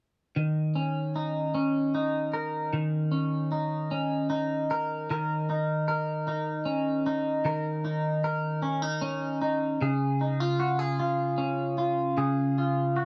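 This pop excerpt is a dramatic, melancholic piece for a lone clean electric guitar, moving slowly at 51 beats per minute in a 6/8 metre with a straight feel, tuned slightly low to A4 = 436 Hz. The guitar enters at 0.4 s on an Eb5 chord and carries the whole piece by itself, picked across a range from Db3 to Bb4. Its tone is bright and twangy, compressed and set up front, with a subtle chorus adding a gentle shimmer. A new section begins at 5.1 s, and the harmony shifts to Db at 9.8 s. The sound is that of a dry, close 1970s-style studio recording, touched with a moderate studio reverb.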